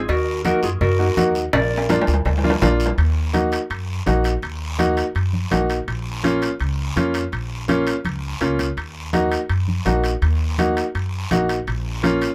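Cumbia in Eb minor at a driving, fiery 166 BPM, this excerpt opens with a dark, clean electric guitar melody with spring reverb that stops at 2.0 s, leaving a brilliant, polished upright piano up front over thumpy pizzicato upright bass, ringing cowbell and timbales, raspy guiro and soft-handed, close congas in the background, with drum fills at 1.5 s and 8.1 s in a lightly reverberant space.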